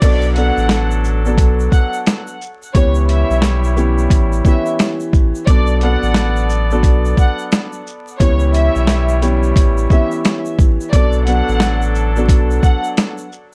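A gritty, reflective boom-bap hip-hop fragment opens with its full band at once: a compressed, pitched-down sampler drum kit with a thumpy kick and high-tuned snare sits up front beside a deep, round sine sub bass, while a dark, woody upright piano with a cassette-tape tint moves between Bm7 and C#m7b5 over a swung groove. Above, a lush bowed violin section with vibrato and tape echo carries the melody, a tight jazz-style trumpet section adds stabs, and a grainy egg shaker sits in the background, with light reverb and vinyl crackle over the whole mix.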